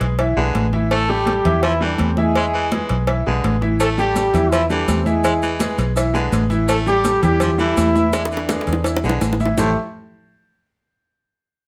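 A fast, passionate salsa at 166 BPM opens with a brilliant grand piano, a round, foam-muted electric bass up front, high-tuned congas and tight, dry cowbell and bongos played with hard hands, and a raspy, growling baritone saxophone on a second line, all moving among E7, Am7 and A5. A punchy trombone section with light vibrato takes the melody from 0.9 seconds, and grainy maracas slip into the background at 3.8 seconds. A drum fill arrives at 8.1 seconds in this danceable fragment cut from a longer piece, set in a moderate studio reverb.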